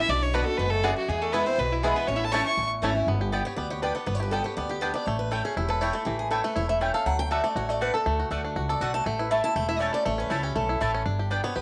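A moderate echo-chamber reverb and small-room ambience surround this joyful, lively bluegrass excerpt in A major, moving in a straight 4/4 at 241 BPM. A clear, nasal fiddle with light vibrato carries the opening melody up front, while a metallic slide resonator guitar, played with fingerpicks, adds a second line in the background until both stop at 2.7 s. A twangy, percussive banjo, also picked with fingerpicks, joins the melody almost at once and stays prominent. The mandolin adds bright double-string stabs, and a growly, woody upright bass holds the low end up front. From 3.1 s, a boxy parlour steel-string acoustic guitar takes a picked solo over a progression that moves through G, A7, D and A.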